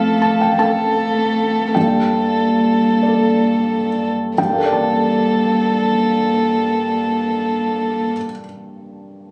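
Neoclassical piano and strings in G minor, this short fragment of a longer piece moves in a slow, rubato 6/8 at roughly 43-55 BPM by the dotted quarter, carrying a longing, melancholic mood. A felt-muted upright piano supplies the accompaniment, soft and mellow with audible action noise, sitting up front and playing until 9.3 seconds across a range from F2 to A5. A dark violin holds the melody on A4, bowed sul tasto by a single player with light vibrato, a soft attack and a smooth top, close and intimate at the front of the sound. Beneath it a dark cello carries a second line between A3 and Bb3, sharing the same hushed sul tasto bowing and light vibrato, and both strings stop at 8.1 seconds while the piano rings on alone. The harmony moves from F to Gmadd9 at 1.8 seconds, the opening passage slows through its first 4.4 seconds before a second section begins, and the whole is heard through a phone recording in the room with club reverb and compression.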